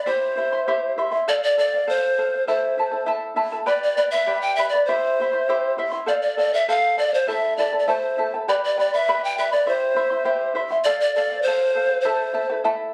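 A straight 2/4 pulse at 100 BPM carries this festive yet melancholic Andean folk piece in A minor, cut from a longer performance and cycling through C, F, Am and G. An airy, woody pan flute takes the melody up front, close-miked with vibrato, tongued notes and a breathy chiff, while a mellow, fingerpicked charango shimmers beside it in accompaniment, its double strings partly octave-doubled. Both enter at 0.0 seconds; the flute stops at 12.6 seconds while the charango carries on to the end at 12.9, and the phone recording captures light reverb and studio ambience.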